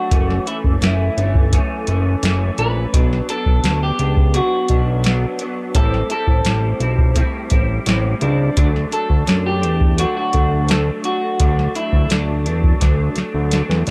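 Two slightly broken-up, twangy electric guitars through a small old amp open this hazy, dreamy bedroom-pop excerpt in D major at 85 BPM: one carries a picked melody with subtle chorus and slapback echo until 12.8 s, while the brighter one plays chords with ensemble chorus and vibrato, moving through F#m7, Bm, Am7 and D. A fat, saturated analog bass, sawtooth-edged and nasal, sits up front beside a soft vintage rhythm box whose overdriven drums pair a deep kick and crisp snare with metallic hats. The rhythm box closes with a fill from 12.8 s, all under a light reverb.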